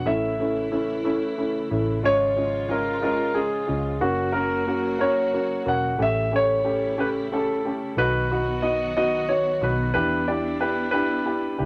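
Set in a slow, straight 6/8, this aching, melancholic pop excerpt has a polished grand piano carrying the melody with long sustain, backed by a woody upright piano accompaniment placed up front. A lush, bowed string section with vibrato holds close sustained chords beneath, while a dark, foam-muted electric bass adds a round, punchy low end. Everything sits in a small room with moderate reverb, and the harmony moves into a second section at 6.0 seconds before the clip cuts off at 11.7 seconds.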